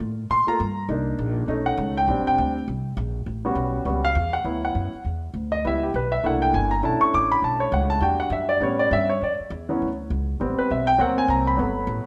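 Energetic and joyful, this big band swing excerpt moves at 202 BPM with a lively swung feel, settling into D major from 4.5 s through a stream of rich extended chords. A warm concert grand piano takes the solo throughout, intimate and natural with deep bass and audible action noise, over a pizzicato upright bass whose woody, growly, thumpy tone sits up front. A large studio reverb gives the room a moderate bloom, though lossy compression artefacts roughen the sound.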